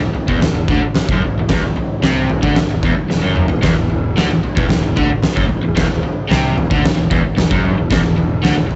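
Swaggering and raw, this garage rock cut from a longer piece rides a straight 4/4 groove, with a crunchy, double-tracked overdriven guitar riff up front over a Dadd9/E chord, carrying a cassette tape grit. An oversized low-tuned acoustic drum kit brings a punchy kick, fat snare and toms in a big, pumping room, saturated and up front, and breaks into a fill from 3.1 to 3.6 seconds. Beneath them sits a round fuzz bass, fingered and overdriven, in the background, all captured as a home cassette recording with a dull, muffled top end.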